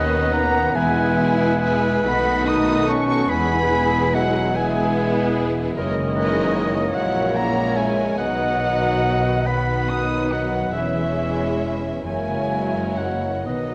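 In a lilting, rubato 6/8, this lyrical, serene orchestral passage has a focused violin section carrying the melody with vibrato and a smooth top, while a close-miked oboe, a punchy clarinet, a hollow silver flute and a second, richer violin section weave second lines around it. A distant viola section accompanies, a French horn section and a dark, very quiet trombone section hold sustained chords, a bright concert harp rings out arpeggios, and a cello section and a double bass section bow the bass. The whole recording sits in a wet scoring-stage reverb and carries the worn, warbling pitch drift of old cassette tape.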